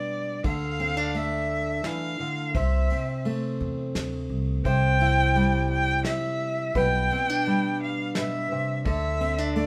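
A rich, bowed cello with vibrato sings up front over a fingerpicked steel-string acoustic guitar from the very start, in this peaceful, pastoral slice of acoustic folk in C major, set in 3/4 at 86 BPM. At 0.4 seconds a woody pizzicato upright bass and a soft, smooth brush drum kit with kick, snare and ride enter beneath the cello solo, while the dark-toned guitar supports a progression moving from Dm through Am/C, C and G/B to D5. A moderate studio ambience gives the small ensemble a natural, intimate sense of space.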